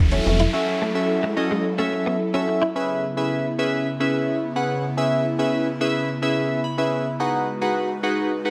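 Dance-pop at 108 BPM in C# minor, this bittersweet yet driving excerpt opens with a punchy, funky analog bass and a gritty, sampler-style electronic hi-hat that both drop out by 0.5 s, leaving a break where a noise sweep, a clean, direct-recorded electric guitar riff with ensemble chorus, and round, evolving analog keys carry on over an airy, breathy pad. From 2.8 s the second section settles on C#m7 after the opening F#m7, with the up-front keys, treated with chorus and phaser, adding a fill at 6.4 s before the harmony moves to G#m7, while the soft, slow-attack pad sustains chords throughout. A lush hall reverb gives the mix a moderate, digital ambience.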